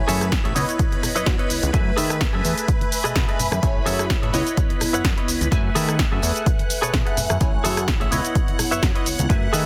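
A punchy, detuned polysynth comp, a swirling vintage string machine in the background and a fat, saturated sawtooth bass open this sensual, funky filtered disco house excerpt at 127 BPM in F# dorian, all pumping to the sidechain as they cycle through Amaj7, C#m9 and F#m11, joined at 0.1 seconds by a twangy, direct-recorded clean guitar riff with 12-bit sampler grit, a tape-toned analog drum machine of cabasa, hi-hat, rim click and snare, and very quiet, dry maracas and congas, before an up-front electronic kick lands at 0.3 seconds, all in digital ambience with a dense, heavily limited modern master.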